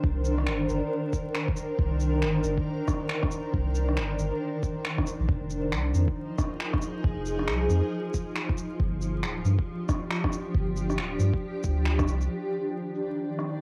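A hazy home-cassette sound with vinyl crackle and light reverb frames this melancholic, ghostly future garage excerpt, cut from a longer piece and moving at 137 BPM in C minor with a swung 16th-note feel. A cloudy, blurred granular pad holds sustained chords from Cm9 through Fm7 and G7sus4, its slow attack and long release drifting in its own built-in reverb while sidechain pumping makes it breathe against the beat. Up front, a deep, round dub sub bass with a soft triangle and square-wave tone carries the low end, also pumping under the sidechain. A muffled, pitched-down kick with an overdriven, thumpy punch anchors the groove, while overdriven electronic shakers, rim clicks and finger snaps, filtered and re-recorded in a large room, scatter above it from 0.2 seconds. The band hits an accent at 11.9 seconds. After the kick stops at 12.1 seconds and the bass at 12.3, a filter sweep washes over the remaining percussion as the pad returns to Cm9 and rings on until 13.6 seconds.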